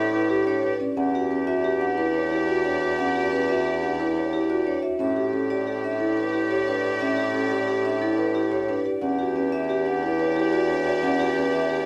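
Soft-mallet marimba arpeggios, woody and round, run through this hypnotic, meditative excerpt of classical minimalist pattern music at 179 BPM in 6/4, set in E dorian and tuned to A4 = 436 Hz, while a ringing vibraphone carries the melody, a clear oboe holds a second line on G4, a lush bowed string section sustains chords, and a warm bassoon plays the bass as the harmony alternates between A9sus4 and Em9, all captured close and detailed with light reverb.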